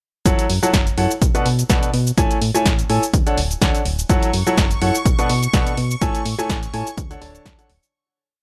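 A dry, gritty hardware recording with little reverb gives this short piano house piece a close, raw feel, soulful and energetic at 125 BPM in 4/4 with a light 16th-note swing in F# minor. A clear, woody upright piano sits up front with audible action noise, playing a riff of dotted-rhythm chords in drop-2 voicings through a cycle of F#m7, Bm7, Amaj7 and Dmaj7. Beneath it, a round, dark FM bass with a fast attack and decaying notes jumps between octaves, and both piano and bass pump against the sidechain. A punchy electronic kick, re-recorded in a small room, holds a four-on-the-floor pulse, while an analog drum machine adds programmed closed and open hats, shaker and a backbeat snare. At 4.1 s a shimmering vintage string machine of sawtooth violins enters softly with a bright, held high C#6, thickened by ensemble chorus and also pumping, as the whole piece fades out from 5.4 s.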